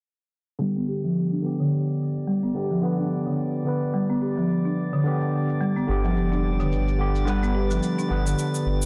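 Soft-mallet folk marimba arpeggios, woody and rustic under tape echo and a filter sweep, ripple through this hypnotic, mystical organic downtempo piece in G major at 108 BPM with a swung 16th feel, joined from the start by a barky, overdriven tine electric piano through a combo amp with the same sweep and echo and by a tape-toned electronic cabasa, while a glassy, drifting glass-harmonics texture with chorus arrives at 1.9 s, a smooth sawtooth analog pad hovers in the background from 5.1 s, and a round sine sub bass anchors the low end from 5.9 s, the mix sitting in a moderate echo-chamber reverb under a dense, heavily limited master.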